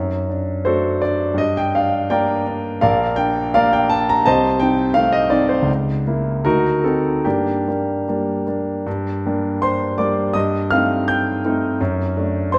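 Set in 2/4 with a freely breathing rubato that drifts between 72 and 86 BPM, this brief fragment of a romantic classical character piece for solo piano unfolds in G minor with a brooding, passionate mood. The grand piano plays alone for the full 12.6 seconds, ranging from a deep Bb1 up to a bright G6. Its tone is clear and intimate, placed up front, with the natural sound of the instrument's action audible beneath the notes. The harmony moves from D/F# through G minor and Bb to darker colours such as Adim/C, C#m6 and a tense D7b9 before settling back on G minor at 7.2 seconds. A return of the opening material begins at 8.9 seconds, passing through Am7b5/G and closing on D/F#. A moderate recital-hall reverb lends the piano a natural sense of space around its close, present sound.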